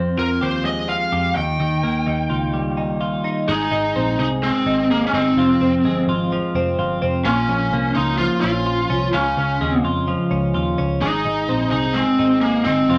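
A wet club reverb surrounds this breezy, youthful slice of jangly indie pop in Ab major, moving at 127 BPM in a straight 4/4. A bright, twangy twelve-string electric guitar sits up front with compressed, clean arpeggios, while a dark, round, foam-muted picked bass anchors the low end and an overdriven lead guitar through a small cranked amp carries the melody from 0.2 seconds. The opening drifts over Fmadd9 and Ebadd9 before shifting at 3.5 seconds into a longer passage moving through Ab, Fm, Bbm and Db and back to Ab.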